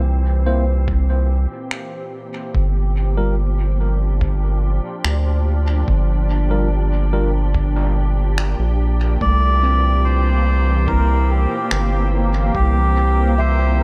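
A dry room and heavy echo shape this hazy, spacious stretch of ambient dub, built on a round, up-front analog bass and a calm, chorused organ-like pad moving from C7 to Gm7 and back. A muffled, thumpy electronic kick and produced finger snaps carry the straight 4/4 pulse, while a clean tine electric piano scatters echoing stabs until 7.3 seconds. From 9.2 seconds a reedy, breathy melodica carries the melody over a ringing steel handpan's tape-echoed arpeggios in the background, and a reversed, detuned granular texture joins at 10.3 seconds.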